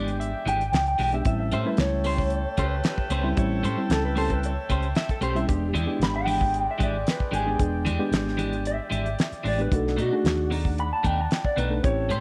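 Straight-eighth soul blues at 114 BPM with a gritty, rollicking mood, where a slightly broken-up, lo-fi electric guitar through a small old amp carries the spring-reverbed melody from 0.5 s over E7#9, A7#9 and B7#9 changes, backed by a dry, up-front 70s drum kit with a fat snare and tight kick, a dark, round, punchy hollow-body bass, clean compressed guitar stabs with lush chorus and slapback echo, a reedy, worn, slightly out-of-tune electric piano, a distant, roomy horn section holding sustained chords with light vibrato, and a clean lap steel second line with slide and volume swells that drops out at 6.0 s.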